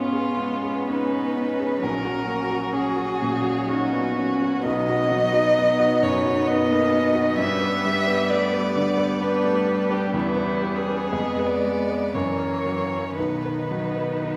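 A slow, tender classical movement for piano quintet in rubato triple metre opens with all five players together. A warm, close violin carries the lyrical melody with smooth, even vibrato, while a rich second violin and a cello sit in the background on supporting lines, and a viola adds expressive portamento to the accompaniment. Beside them a clear, intimate baby grand piano sits up front, its long sustain and audible action noise caught naturally in a reverberant recital hall, as the harmony moves through a diminished seventh and a dominant seventh before resolving home.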